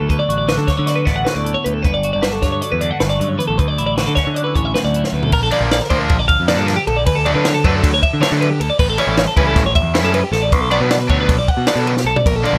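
Warm twelve-string electric guitar arpeggios ring over a second, phaser-tinged twelve-string's twangy, up-front clean accompaniment that stops at 7.1 s, while a growling overdriven picked bass and a dry, compact cocktail drum kit with dark cymbals, a high-tuned snare and a tight kick drive this wistful, bright math rock and midwest emo passage in 9/8 at 311 BPM in D major, with a double-tracked, overdriven semi-hollow guitar riff entering at 5.5 s as the harmony moves from Dmaj9 to Bbmaj7, the whole set in a lightly reverberant room.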